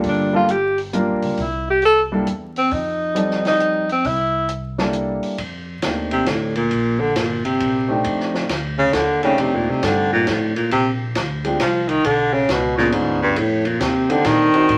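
A swinging 3/4 lilt at 135 BPM carries this playful, warm fragment of small-group jazz in F mixolydian, where an intimate concert grand with audible action noise comps up front alongside a woody pizzicato upright bass and a compact cocktail kit with dark cymbals, a high-tuned snare and a punchy kick. A warm tenor saxophone with vibrato and a soft attack states the melody from 0.1 to 4.5 seconds, then a clear baritone saxophone, with subtone and scooped notes, takes a solo that enters at 6.1 seconds over chords running from Gm7 through Bdim7 back to F13. A studio reverb and vinyl crackle lend the whole a vintage patina.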